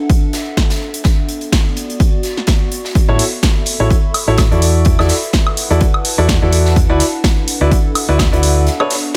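An overdriven, analog electronic kick drum sits up front in this uplifting, joyful piano house excerpt at 126 BPM in 4/4, with 56% swing on the 16ths and tuning at A4 = 438 Hz. Beneath it, a nostalgic, lo-fi pad of detuned square and triangle tones with a slow attack and long release warbles through chorus and its own reverb, pumped by sidechain. An analog drum machine adds punchy, overdriven hi-hat, snare and woodblock, while a big-room acoustic kit contributes high-passed hi-hat and a medium-tuned snare. At 3.1 s a clear, woody upright piano riff enters up front with digital delay and sidechain pumping, joined by a dark, round hollow-body short-scale fingered electric bass with an amped tone, also pumping. The chords move from Dadd9 through Bm7, A6 and E9sus4 to D69, and a short break at 8.7 s lands on Bm9, all within a light reverb.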